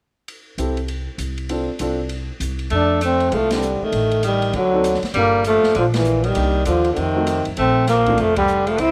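A moderate echo-chamber reverb and small-room ambience frame this relaxed, sophisticated small-group swing and bop excerpt in F major at 197 BPM, where an open drum kit with dark cymbals and a boomy kick starts at 0.3 s, a warm baby grand piano comps and a woody, thumpy pizzicato upright bass sits up front, and from 2.7 s a warm, roomy trombone with vibrato carries the melody while a clear, vintage-toned tenor saxophone adds a second line with scooped notes, the whole band hitting accents along the way.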